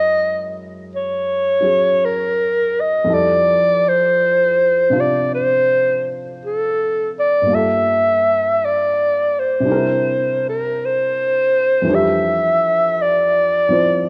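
A breathy clarinet and a dark baby grand piano begin together, opening a tender, late-night jazz ballad in F major at a slow 55 BPM in 4/4, with a gentle swing on the eighth notes. The clarinet carries the melody up front as a solo voice, singing in a jazz style with vibrato and a breathy edge, staying between A4 and E5. Beneath it, the mellow, intimate piano accompanies from F2 up to C5 at a lower level, its short sustain and audible action noise giving it a natural, close-up feel. The harmony moves from Gb9 to Fmaj7, then through Gm7 and C7 before settling on Fsus2 at 11.9 seconds as a new section begins. Both instruments carry the soft, rounded colour of cassette tape, and a light reverb surrounds this home recording, tuned slightly low at A4 = 439 Hz and cut from a longer piece at 14.1 seconds.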